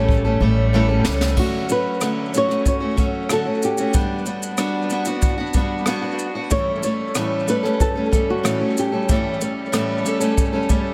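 A straight 4/4 pulse at 93 BPM opens this heartfelt, easy-going acoustic pop passage in D major with a brushed drum fill on an airy, polished kit with dark cymbals, a high-tuned snare, a boomy kick, rim clicks and shaker, while a woody, thumpy pizzicato upright bass sounds only until 1.3 s beneath an up-front parlour steel-string guitar picking fresh-stringed accompaniment through dub echo, before a dark, fingerpicked flamenco guitar with audible finger squeak enters on the melody at 1.4 s, also echoed, over Dmaj7, Gmaj7 and A7 in a small, lightly reverberant room.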